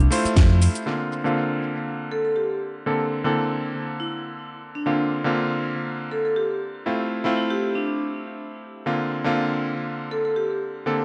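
A ringing, hard-mallet vibraphone carries the melody through dub echo from 2.1 s, over a clear, clangy electric grand piano that accompanies the Fmaj7, C9sus4 and Bbmaj9 changes in this sunny, groovy nu-disco excerpt at 120 BPM in C mixolydian, after an opening of under a second in which an envelope-filtered fingered electric bass, a punchy electronic kick and a tape-warm house kit of metallic hats, shaker and cracking snare sound briefly, the whole mix set in an echo-heavy chamber reverb with a darkened top end.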